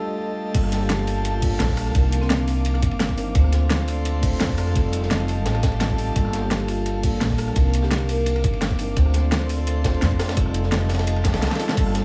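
A mellow tine electric piano and an airy, breathy pad open this melancholic, soulful liquid drum and bass excerpt, the piano carrying a vintage sampler grit and digital delay while the chorused pad pumps under sidechain. At 0.5 seconds the drop arrives: a knocking, overdriven electronic kick, a layered pop kit with a fat snare, hats, rim clicks and crash, and a crunchy breakbeat kit with dark cymbals, a high-tuned snare and a saturated, rolled-off top. A woody pizzicato upright bass sits up front, its steel strings giving the low end a warm, plucked weight. From 0.8 seconds a soft-mallet marimba on rosewood bars drifts in the background with its own delay, returning for a second phrase later on. The harmony cycles through ninth, eleventh and seventh chords such as Gm9 and Cm11, all inside a light reverb, before a drum fill at 11.2 seconds closes the passage.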